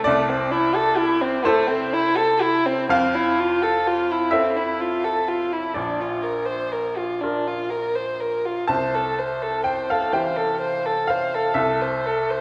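A dark, woody violin carries the melody from the first second to the end at 12.4 s, its single bowed line sitting up front with a smooth top and vibrato. Beneath it, a bright upright piano supplies the accompaniment across a broad span of its range, its polished, brilliant tone ringing with long sustain. This is neoclassical music for piano and strings in a slow 6/8 at 42 BPM counted in dotted quarters, played with a rubato feel that keeps the pulse flexible. The harmony moves from Am/C through Fmaj7, Bb and C6 before returning to Am/C, giving the tender mood a hopeful lift. A recital-hall reverb with a 1.4-second decay surrounds both instruments, and the church-like acoustic softens the highest frequencies of this short passage cut from a longer piece.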